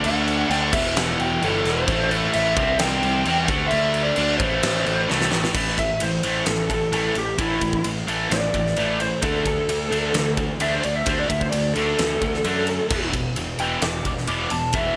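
A cranked, lo-fi lead guitar with slapback echo rides over a double-tracked, high-gain rhythm riff, round fuzz bass and a huge, airy arena drum kit with a fat snare and punchy kick in this aggressive, driving hard rock excerpt in A dorian at 131 BPM, where a drum fill at 5.1 seconds launches the lead guitar solo at 5.6 seconds.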